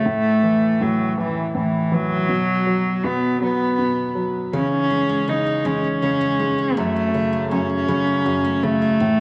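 This short pop excerpt moves in a slow, straight 6/8 at 54 beats per minute, counted in dotted quarters, with an aching, dramatic mood. A single bowed cello carries the melody up front, its tone nasal and reedy with a gut-string, period-style character, set slightly distant and trailed by delay. A baby grand piano sits close beneath it as accompaniment, natural and short in sustain. At 4.5 seconds a picked jumbo steel-string acoustic guitar joins in the background with bright, full-bodied arpeggios, also touched by delay. The chords pass from A5 and B5 to C#madd9 and F#madd9. A moderate plate reverb and the worn, warbling pitch drift of old cassette tape give the whole sound a faded, wavering quality.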